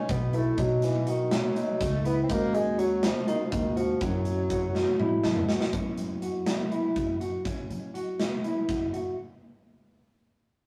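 Tense and intricate, this short progressive instrumental excerpt in 7/8 has a warm bassoon carrying the melody with light vibrato over a bright, ringing vibraphone line until 5.2 seconds, while a mellow tine electric piano adds fills in the background, a dark, clean electric guitar plays compressed arpeggios with a warbly pitch drift, a woody, thumpy pizzicato upright bass anchors the low end, and a punchy, up-front rock drum kit throws in a fill from 4.7 to 5.7 seconds, all captured in a rough rehearsal-room recording with saturated small-room ambience.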